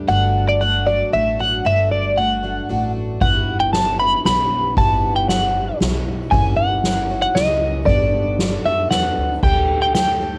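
This indie folk excerpt in a straight 3/4 has a nostalgic glow and an arrangement that builds as it goes, captured as a cassette home recording in a small room with light reverb. A fingerpicked jumbo steel-string acoustic guitar sits in the background with a full-bodied tone and audible finger squeak, dropping out at 4.8 seconds. Meanwhile a picked, plugged-in dreadnought twelve-string acoustic shimmers with its octave-doubled sparkle, and a pizzicato upright bass adds a woody, growly low end. Up front, a clean, compressed twelve-string electric guitar carries the twangy high melody through a harmonic tremolo. A soft-mallet drum kit enters at 3.2 seconds with a boomy kick, a medium-tuned snare and dark cymbals, while the chords move from D/G through Emadd9/G, F#7/G and Bm7/G before settling on Dsus4.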